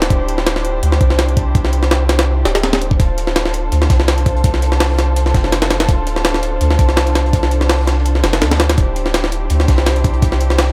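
A compressed, pitched-up jungle sampler-style drum kit leads this frenetic, nostalgic drum and bass excerpt at 166 BPM in D minor, its thumpy kick and high-tuned snare gritty and up front, carrying the sound of a large room. Beneath it a round, deep dub sub bass holds sustained, mellow low notes, while a muted chamber string section plays veiled, bowed chords with vibrato over Cadd9/D and Dm7. From 3.0 seconds a very quiet, saturated breakbeat kit with a dark, rolled-off top adds hi-hat and snare in the background, all within a small room ambience.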